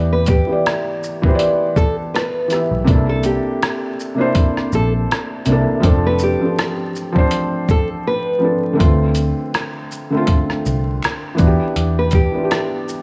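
Lo-fi hip hop at 81 BPM with a lazy 16th-note swing, this reflective, hazy excerpt drifts through Em7, C13, F6 and Dm7 chords on a soft, felt-muted upright piano that sits up front with audible action noise, colored by cassette tape and a low-pass filter. A dark, round muted electric bass and a gritty, compressed sampler-style kit with a thumpy kick, hi-hat, rim click and shaker carry the groove, while a small, fingerpicked nylon-string guitar melody floats through low-pass filtering and analog delay. Vinyl crackle and light small-room reverb frame the sound, a brief silence falls at 8.1 seconds, and very quiet finger snaps join at 9.6 seconds.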